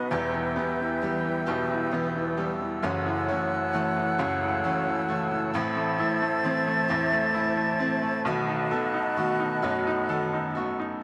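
A bright, slightly detuned upright piano with audible action noise accompanies this dramatic, aching pop ballad in a slow six-eight lilt, sitting up front beside a breathy, mellow flute section that holds sustained chords with unsteady vibrato and a crisp attack. Underneath, a full-bodied picked steel-string acoustic guitar plays arpeggios through a brooding progression from Em through F#m7 and Am to B7. A moderate plate reverb lends the intimate, woody piano and the flutes a lingering glow in this short cut from a longer piece.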